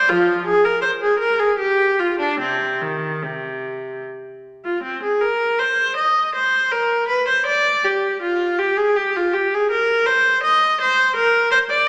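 A single clear, bowed viola plays up front with light vibrato and a smooth, even tone in this dance-like, radiant baroque-style suite movement for unaccompanied viola in C minor, moving in a rubato 3/4 at 72-84 BPM, ranging from C3 to Eb5, shifting into a new section at 4.8 seconds, and ringing in a wet recital hall reverb in this passage cut from a longer piece.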